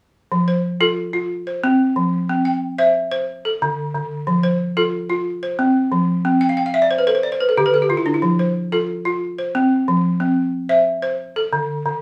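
A rolling 12/8 pulse at 121 BPM in dotted quarters carries this short, hypnotic West African traditional piece in F Lydian, tuned to A4 = 443 Hz. A lone balafon, woody and buzzing under hard rubber mallets, plays up-front arpeggios from D3 to G5 over a cycle of F, C and D5, with a fill from 6.4 to 8.2 seconds as the harmony briefly drops away. The small studio room adds a wet reverb to the warm, close sound.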